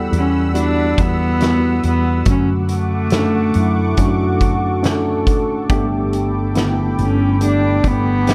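A straight 4/4 pulse at 70 BPM from a loose, roomy indie drum kit with a fat snare carries this heartfelt, emotional pop ballad fragment in D major, where a worn, slightly out-of-tune tine electric piano and a dark, round woody fretless bass sit under a lush, detuned sawtooth pad with chorus, an up-front, nasal, gut-string cello carries the bowed melody, and a mellow French horn section adds a distant second line from 3.6 to 6.7 seconds, all over chords moving from Emadd9 to Dmaj7/F# and Gadd9 in a dry sound.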